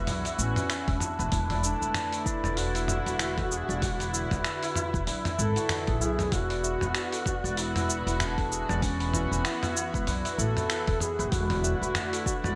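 Bright, 1980s-style digital production with a moderate plate reverb frames this peaceful, earthy organic downtempo passage with a light swing, where floating, soft-attack bowed strings hold sustained chords with a sidechain pump, a shimmering hammered santur ripples arpeggios through digital delay, a woody pizzicato upright bass thumps low, and a gritty, up-front sampler-style kit of finger snaps, hi-hat, shaker and toms sits in gated reverb, before a distant, mellow duduk enters at 0.4 seconds with vibrato and scooped notes through its own delay, a deep layered electronic kick joins at 0.9 seconds, and a background electronic swell surfaces at 5.4 seconds.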